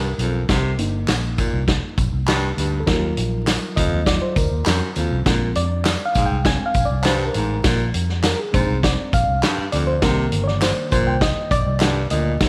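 A straight, danceable four-four groove drives this uplifting 1960s-style soul excerpt, with a vintage drum kit of hi-hat, punchy kick and medium-tuned snare joining at 0.2 s, sitting up front in a natural studio room sound with a rolled-off top. A small-room layer of tube shaker and group handclaps rides quietly in the background, while a dark, round, foam-muted fingered electric bass anchors the low end. The reed electric piano takes the solo over the whole passage, its reedy, worn and slightly out-of-tune tone heard clean through its built-in speakers as the harmony moves from Cm7 to Ebmadd9, Bb7 and back to Cm7. Underneath, a bright baritone saxophone plays a low riff with vibrato and jazz-style scooped notes. A moderate echo chamber reverb and a layer of vinyl crackle give the whole track a vintage character.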